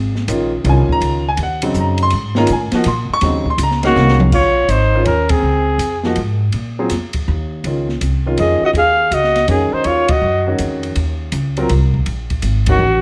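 This cool, searching modal jazz excerpt in swung 3/4 at 163 BPM opens with woody pizzicato upright bass, a small-room drum kit with dark cymbals and a boomy kick, and a present grand piano with long sustain, moving into Bb minor at 4.3 seconds after a drum fill. Breathy trumpet with vibrato, scooped notes and plate reverb carries the melody up front, while a mellow, whispered alto saxophone in subtone plays a second line, the horns sounding in two phrases beginning at 3.8 and 8.4 seconds. Band accents punctuate the Bbm11 and Ebm11 harmony, and the trumpet returns briefly at the close.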